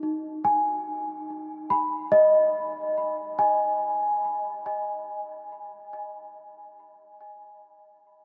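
A worn, slightly out-of-tune celesta plays alone from the very start of this short ambient excerpt. Its bell-like, delicate tone from soft felt hammers sits up front, carrying a delay and spanning D#4 to B5. The phrase rests on a B chord before the harmony falls away at 5.1 seconds. A huge, wet reverb places it in a vast, echoing space and leaves a reflective, melancholic mood.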